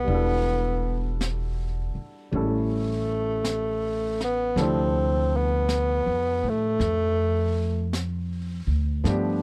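A slow 54 BPM swing in 4/4 sets the pace for this tender, romantic jazz ballad fragment, with a brushed drum kit entering at 0.1 s to add an airy touch of high-tuned snare and hi-hat beneath the band. Up front, a breathy tenor saxophone takes the solo in a mellow subtone, colouring its melody with scooped notes and light vibrato, while a woody pizzicato upright bass holds the low end and a warm baby grand piano comps through Em11, A7 and Dm9. The sound is dry and close, with little reverb, in the manner of a 1970s studio recording.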